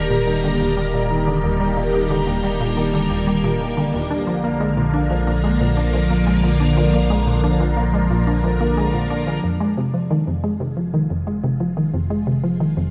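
Drenched in echo-chamber reverb with a dusty cassette haze and a soft, rolled-off top end, this excerpt of cosmic, expansive ambient space music drifts over a straight sequencer pulse. Up front, a bright, swirling string machine holds sustained chords through ensemble chorus and phaser, while a juicy, squelchy blip pluck with a fast attack plays a resonant riff through chorus and analog delay, all anchored by a deep, round sine sub bass. Tucked in the background, a bubbling texture of random filter steps glimmers with its own reverb until it drops out at 9.5 seconds, just as the harmony moves from Eb and Bb onto Fm.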